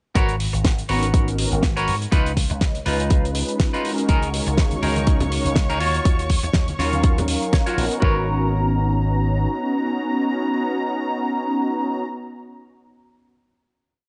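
Sleek and cosmic, this short nu-disco piece rides a punchy four-on-the-floor electronic kick that sits up front, with a damped 70s kit adding a fat, dry snare backbeat and closed and half-open hi-hats under a syncopated slap bass riff run through an envelope filter. A bright semi-hollow electric guitar picks funk chord rhythms through lush chorus and analog delay, while mellow synth brass fires detuned sawtooth chord stabs with chorus, phaser and sidechain pumping, and a dark chamber string section holds a high note from 4.1 seconds as ringing congas sit in the background. A clean electric guitar fill at 7.3 seconds leads into the closing chord at 8.0 seconds, where the semi-hollow guitar and synth brass carry on to the end.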